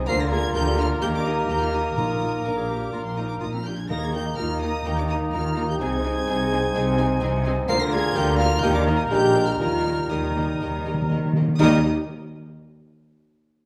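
A quick, spirited classical-period movement for symphony orchestra moves at 125 BPM in a straight 4/4 in Eb major, graceful from the first bar. A rich, smooth chamber violin section carries the melody high above the staff with even, vibrato-laden bowing, while a second violin line sits in the background alongside a very quiet, lush viola section that adds portamento and expressive colour to the accompaniment. Woodwinds fill out the middle: an airy, hollow flute with a crisp attack, a smooth-topped oboe and a background clarinet share second lines, and a close-miked, mellow bassoon supports the harmony. Cellos and a soft-attacked double bass section anchor the bass, a tight French horn section holds sustained chords behind the texture, and timpani with medium mallets strike dry and close, first around 2.0 seconds and again in a fill from 9.6 seconds. The harmony circles through Bb, Eb and Ab chords with a Bb7 pushing home, all set in a wet recital hall reverb, and a new section begins at 11.6 seconds in this excerpt cut from a longer piece.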